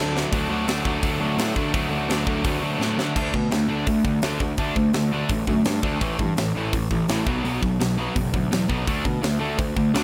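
This upbeat, rebellious punk rock excerpt opens with a distorted, double-tracked electric guitar riff and a growly, fuzz-drenched picked bass, with a tight metal drum kit joining at 0.2 seconds. At a straight 168 BPM in 4/4 and in D major, the guitar sits up front with a compressed, bright bite, while the overdriven bass underpins it from a low F#1. The acoustic kit sounds airy and polished in a big room, with a high-tuned snare, a tight kick, bright cymbals and a crash cymbal. A drum fill leads into a new section at 3.2 seconds, where the harmony moves through D5, A5 and B5 power chords before returning to D5. Light reverb gives the whole performance a little space, and the clip is cut from a longer piece.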